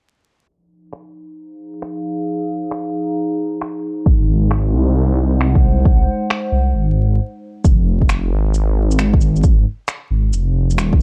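A dry, gritty hardware sound with vinyl crackle and a low-pass filter gives this melancholic, rainy future garage excerpt a muffled, close feel, with swung sixteenths in 4/4. Electronic finger snaps and shaker begin at 0.9 seconds, and a warbly, tape-like pad soon fades in under a filter sweep, holding nostalgic, lo-fi chords built from square and triangle tones with a slow attack, chorus, built-in reverb, dark 12-bit sampler grit and sidechain pumping. At 4.1 seconds a deep electronic kick and a swelling, detuned saw bass arrive together up front. The bass is a menacing, evolving unison of sawtooth and sine layers, saturated and shaped by sidechain pumping. After a brief break, the pad drops out at 7.6 seconds, leaving kick, bass and percussion to carry the final stretch.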